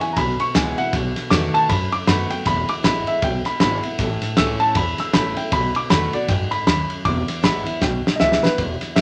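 Rollicking and rowdy, this short rockabilly cut, lifted from a longer piece, swings lightly in 4/4. A dark, mellow upright piano carries the melody as a solo from the opening through 8.6 seconds, riding over a chord cycle that moves from E through B7 and A and back home. Beneath it, a picked steel-string acoustic guitar with old strings and a full-bodied dreadnought tone fills in the accompaniment, while a pizzicato upright bass on gut strings adds a thumpy, woody low end. The cloth-damped drum kit sits up front with a fat snare, tight kick and dusky ride cymbal, its saturated, gritty character and rolled-off top giving the groove a thuddy punch. A drum fill from 7.8 to 8.6 seconds closes the passage, and a moderate large studio reverb lends the whole band a sense of space.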